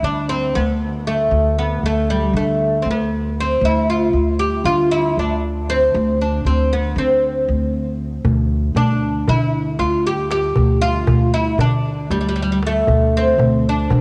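Turkish makam ensemble music in D makam huseyni, a hypnotic and longing fragment in 9/8 at 234 BPM counted in eighths, where a bright, fretless, plectrum-plucked oud with double strings carries the melody up front over a dark, thumpy pizzicato upright bass on gut strings and a bowed double bass drone on D with soft-attack vibrato and portamento, tape-tinged and set in the background, until a clay-shell darbuka with natural skin and hard hands enters at 8.2 s, all in a lush hall reverb on a homespun cassette recording.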